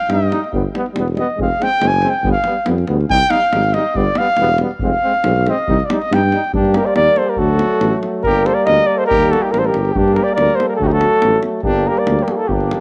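A dark, vibrato-laden trumpet solo opens over a deep davul in this bittersweet, virtuosic Balkan brass band excerpt at 140 BPM in C harmonic minor, backed by a punchy trombone and a present, mellow euphonium in the background and a mellow tuba bass up front, before the music shifts to G harmonic minor at 6.5 seconds, where a close-miked cornet with light vibrato takes the melody at 6.6 seconds, all captured with light studio reverb on a homemade cassette recording.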